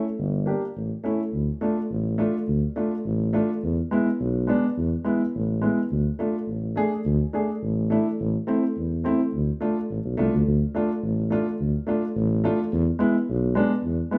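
A straight 2/4 pulse at 105 BPM drives this klezmer excerpt, and the tempo gradually speeds up across its 14.2 seconds. The mood is soulful yet festive, rooted in D dorian sharp4, with harmonies moving from Gm and A into Dm, E, D5 and Am. A dark, woody upright piano carries the accompaniment from the very start, its vintage character enhanced by audible action noise and a smooth, intimate touch. A mellow tuba enters at 0.2 seconds to take the bass role, played close-miked in a jazz style with light vibrato, a soft attack and scooped notes. Both instruments sit up front, as if the band is playing live together in one room, wrapped in a wet studio reverb.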